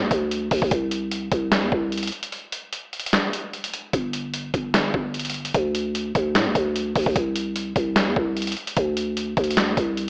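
A growling, buzzy 808-style bass sits up front, with a fast attack and a decaying sine body that moves between G1 and A2 from the very start. Beside it, a dusty, sampler-style drum kit enters at 0.1 seconds, compressed and gritty, with a thumpy kick, a medium-tuned snare, hi-hat and finger snaps, re-recorded in a large room yet kept close. This is dark, melancholic trap-leaning hip hop in a half-time feel, cut from a longer piece, with a break arriving at 2.3 seconds and lasting until 3.9 seconds. The whole sound carries a worn, warbling old-tape character, like a cassette with pitch drift heard through a small speaker. A moderate recital hall reverb adds a lingering tail around the parts.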